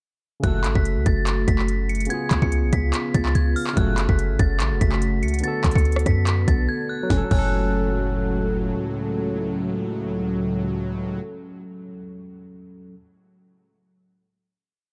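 Brooding and dark, this short trap hip hop piece rides a half-time beat built on a hard-clipped kick, sharp snare, crisp hats with fast rolls, handclaps, rim clicks and a crash, all placed up front until the drums stop at 7.4 s after a brief break. A boomy 808-style bass with a fast attack and mellow decay holds long sub notes that follow the kick and slide in pitch, sitting loudest in the mix beneath a moody progression that moves from F#m through C#7 and Bm7 back to F#m. Over the top, an inharmonic, warbling FM bell with a vintage ring loops a high melody through chorus and a low-pass filter, while a barky tine electric piano through a combo amp repeats held, open-voiced chords like a sampled loop. A detuned analog pad swells in at 1.0 s in the background with deep, evolving sustained chords. A fat, bold polysynth punctuates the hook with short, echoing stabs, then returns at 7.1 s with more stabs over the final chord alongside the pad. 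The dry, dark production leaves the electric piano to ring on alone until 13.0 s.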